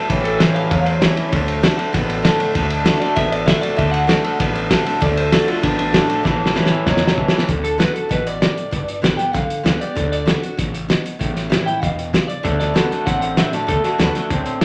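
A picked, full-bodied acoustic guitar in the background and a twangy, slightly broken-up electric guitar riff through a small old amp open this upbeat, retro rockabilly excerpt, joined at once by a woody, thumpy pizzicato upright bass, a cloth-damped drum kit that sits up front with a fat snare, tight kick and muffled, gritty, lo-fi character, and a bright, compressed electric guitar melody, while the riff guitar drops out after a drum fill at 7.5 seconds and returns at 12.4 seconds, all in a moderate large studio reverb.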